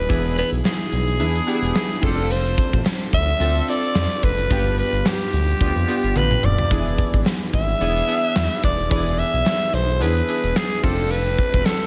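This 1980s-style pop excerpt feels nostalgic and dramatic, riding a lightly swung 4/4 groove. A growling alto saxophone carries the melody up front in a jazz style, its raspy, gritty tone softened by scooped notes, vibrato and a smooth top, with a delay trailing its lines. Chorused retro synth keys supply glossy, detuned accompaniment with a filter sweep and pulse-width modulation. A smooth, mellow synth bass holds the low end beneath them. A big rock drum kit, punchy in the kick and bright in the cymbals, sits forward in a big room and breaks into a fill at 6.2 seconds, while a very quiet group handclap adds a hollow, human texture from 0.7 seconds. The harmony moves through E7, Dm7/F and G7 before returning to E7 and settling on Dm7 at 10.8 seconds, all under a light studio reverb.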